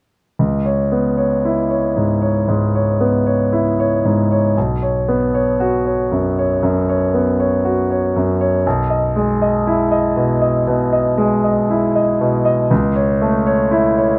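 A polished, up-front concert grand piano fills this short excerpt, framed by light reverb that gives it a touch of space. The piece is classical in style, in C# minor and 4/4 at around 59 BPM, with a rubato feel that lets the time breathe freely. The piano plays an accompaniment role from 0.4 to 14.2 seconds, ranging from B1 up to D#5, so its deep bass anchors the lower register while the upper notes stay clear. The harmony moves slowly through C#m7, Bsus2, Emaj7/B and A/C#, each chord lingering for roughly four seconds. The mood is reflective and fragile, like a passage lifted from a longer work.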